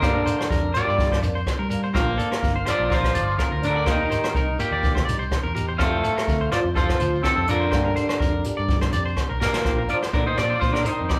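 Highlife guitar band at 125 BPM in Bb major with a warm, joyful swing, where a twangy, slightly broken-up electric guitar carries the melody up front over a second electric guitar's arpeggios, a forceful vintage trombone line with light vibrato, a boxy old acoustic guitar, a round, dark fingered bass, brush drums with a boomy kick, and a grainy shekere in the background, all in a large-studio reverb, with a drum fill at 9.4 seconds leading into a new section at 9.7 seconds in this cut from a longer piece.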